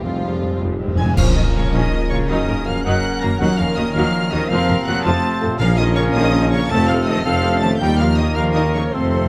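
In a straight 6/8 at 108 BPM, this heroic, swashbuckling film-score passage in Bb harmonic minor opens on a timpani fill struck with hard mallets. A bright flute slips in with a second line at 1.0 seconds, just before a bright, up-front crash of clash cymbals and concert bass drum marks the accent at 1.2 seconds, where clear clarinet and cor anglais add second lines of their own. A distant, lush violin section carries the vibrato-rich melody over a second violin line, portamento violas, an intense cello section, dark tuba and smooth double basses, while very quiet mellow horns and trombones sustain chords and a ringing harp arpeggiates beneath. Moving through Bbm, Gb6, Ebm7 and a suspended F resolving to F, the adventurous excerpt brings the timpani back at 5.6 seconds, all set in a light reverb.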